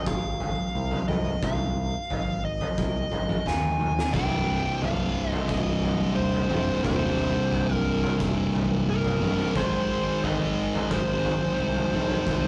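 Stoner and doom metal at 88 BPM in 4/4, ominous and brooding, this cut from a longer piece opens on Ab with a dark, picked fuzz lead guitar up front carrying the melody, a growling fingered bass that is bright and overdriven with tube saturation but sits in the background, and an oversized low-tuned drum kit with a punchy kick, fat snare and gritty toms in a stone room. After a drum fill at 3.5 seconds, a thick, double-tracked fuzz guitar riff enters at 4.1 seconds as the harmony moves to Cm, returning to Ab at 9.6 seconds. The rough rehearsal-room recording has moderate reverb and warm saturation, with the instruments tuned to A4 = 437 Hz.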